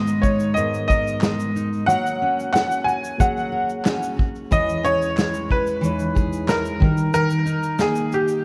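Wistful and tender, this acoustic pop excerpt in G# minor moves at 91 BPM, with a bright, slightly detuned upright piano carrying the melody through a delay over a fingerpicked jumbo steel-string guitar with audible finger squeak, a reedy electric piano with fast tremolo, a punchy unplugged drum kit of kick, snare and shaker played with bundle sticks, and very quiet hollow group handclaps from 1.2 to 8.0 seconds, all set in a moderate concert hall reverb and colored by warbling old cassette tape drift over chords moving from G#madd9 to F#, C#m/E and D#.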